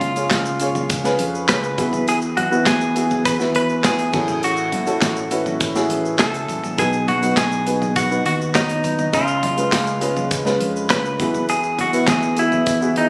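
A clean, twangy electric guitar carries the melody up front, bright and compressed with a touch of spring reverb, over a woody, slightly detuned upright piano with long sustain in this hopeful piano-driven pop excerpt at 102 BPM. Growly fingered electric bass and a mid-forward studio drum kit with punchy kick, handclaps, toms and crash sit beneath, while a grainy tube shaker stays in the background from 0.2 seconds. The chords move through C#, Eadd9, A6 and B, and the whole thing has the light reverb and room ambience of a phone recording.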